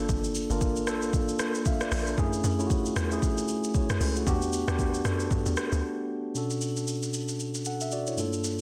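This amapiano excerpt moves at 115 BPM in 4/4 with a 58% swing on the sixteenths, settling into a hypnotic, soulful mood in B minor with tuning at A4 = 438 Hz. A mellow tine electric piano sits up front with a clean, direct tone, carrying the harmony through Gm9, F#m9 and Em9 before arriving on Bm9, and it adds a short fill around 1.4 seconds. Beneath it, a tight, punchy log drum bass with an FM character, a noise layer and a fast, decaying attack drives the opening drop until it drops out at 5.8 seconds for a brief break. The smooth R&B drum kit is electronic and produced, with a soft kick, smooth hi-hats, rim clicks and shaker, tape-toned and re-recorded in a large room, roughened by vintage 12-bit sampler grit and soft clipping on the snare. A new section begins at 6.4 seconds on the Bm9 chord with electric piano and drums, all framed by light digital reverb and a dense, heavily limited modern master.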